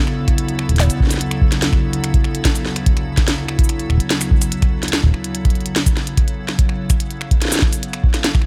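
A dry, up-front mix puts a deep, overdriven analog kick at the fore of this glitchy, playful IDM fragment in D major, running at 145 BPM in a straight 4/4. Around it, a produced kit of finger snaps, clicky hats, shaker and a tiny snare has a tape-warm character. An icy, crystalline glass pad of detuned sine voices with a noise layer holds sustained chords from D2 to A4, its slow attack, chorus and built-in reverb lending an airy, bright glow as the harmony moves from Dmaj7 to B5 at 5.3 seconds.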